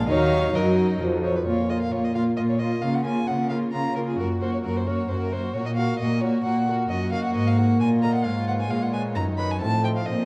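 In a straight 3/4 pulse, this driving, dramatic excerpt from a baroque-style concerto movement sets a solo violin's reedy gut-string melody over a very quiet violin section, a rich second violin line, a dark, nasal viola section, a delicately fingerpicked double-strung lute, an up-front cello section, and a double bass section that drops out at 1.5 s, all bathed in a wet recital-hall reverb.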